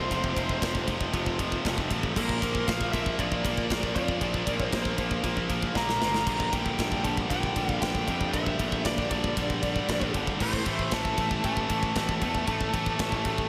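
A straight 4/4 groove drives this heavy, relentless metal excerpt, with an airy, polished drum kit up front: bright crash and ride cymbals, a medium-tuned snare and a tight kick, plus a short fill at 5.8 seconds. Two distorted rhythm guitars, one high-gain and one tight, sit in the background playing riffs over F5, Bb, Gm/Bb and A5, while a growly fuzz bass adds overdriven low end. A warm, high-gain lead guitar carries the melody, and the guitars share a slapback echo, all set in a lush hall reverb that gives a big arena sound.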